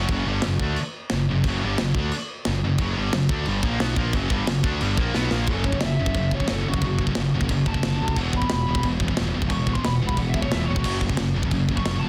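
Two bright, scooped high-gain guitars pound out a distorted riff over a growling, overdriven picked bass, with a tight, mid-forward acoustic drum kit up front driving this relentless, heavy metal passage with kick, snare, crash and china cymbal. After a drum fill at 5.2 seconds, a dark, bluesy overdriven lead guitar takes a solo from 5.5 seconds, touched with tape echo, as the harmony moves from F#5 to E5 and back. The sound is dry, dense and heavily limited in a modern master, and the recording is cut from a longer piece.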